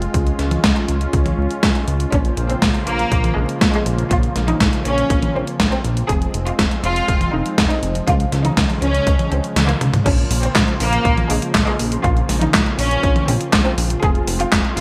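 A clear, biting studio violin section carries the melody from 2.1 s, its light vibrato set in digital delay above a 121 BPM Italo disco groove in Bb minor that feels danceable and nostalgic. An up-front, tape-warm 12-bit drum machine with gated reverb drives the beat alongside a punchy, overdriven kick, which drops out at 9.6 s for a drum fill before the second section. A dark, glossy synth bass with tube saturation and a smooth, warbling analog pad fill out the bright 1980s-style production, which has plate reverb and a touch of vinyl crackle.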